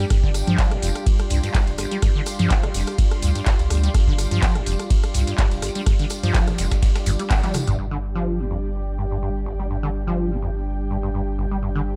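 This trippy, gritty acid house excerpt at 125 BPM opens on a G5 chord, with a thick, detuned sawtooth pad and a soft, breathy ring-modulated pad both pumping under sidechain, a squelchy, resonant acid saw bass with overdrive, chorus and analog delay, a round sine sub bass up front, and a jingly, distant tambourine. A deep, tape-colored electronic kick leads the drums, joined by a booming, dry analog drum machine with metallic hats, congas, handclaps, rim clicks, toms and cymbals, plus a very quiet, compressed sampler-style kit of hi-hat and snare, through a drum fill from 7.4 to 7.8 s. Once the percussion ends near 7.8 s, the pads and basses carry on in a dark, warm mix.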